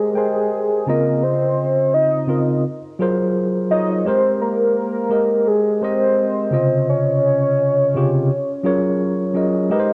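Cosy and dreamy, this hip hop excerpt moves at 85 BPM with a gentle sixteenth-note swing, drifting through lush major-ninth chords from Abmaj9 to Dbmaj9 and Gbmaj9#11. A velvety, dark synth lead carries the melody up front from start to finish, its detuned unison tone softened by chorus, tremolo and a low-pass filter, while a clean tine electric piano accompanies it through cassette-tape colouring. A moderate plate reverb and worn, warbling tape with pitch drift give the whole sound a faded, nostalgic glow.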